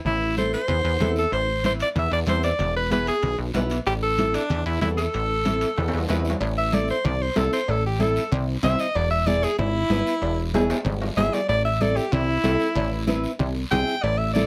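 A punchy alto saxophone carries the melody from the first moment over a funky, plucky analog bass with a sawtooth edge, a fast attack and a decaying tone, damped congas played with soft hands, and a raspy guiro, launching this passionate, danceable cumbia at 189 BPM in a straight 4/4. A fingerpicked nylon-string guitar joins at 0.4 seconds with a classical touch and audible finger squeak, and ringing, vintage-sounding timbales and cowbell sit in the background from 1.3 seconds. In A harmonic minor, the harmony moves between A minor and E. Drum fills mark the turns, and from 6.4 seconds the saxophone moves into a present, vibrato-laden solo that runs to the end of this cut from a longer piece. The saxophone and the evolving bass sit up front in a moderate studio reverb.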